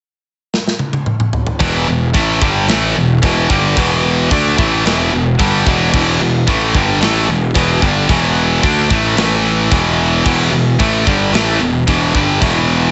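A bright, up-front high-gain guitar and a second distorted guitar drive an aggressive, heavy metal riff in E minor at 111 BPM, entering at 1.6 seconds after a drum fill that begins at 0.5 seconds on a tight, big-room kit with crash, hi-hat, toms and a medium-tuned snare, while a growly, fuzz-overdriven picked bass punches beneath the Em riff as it briefly moves to A5 at 9.2 seconds, set in light reverb.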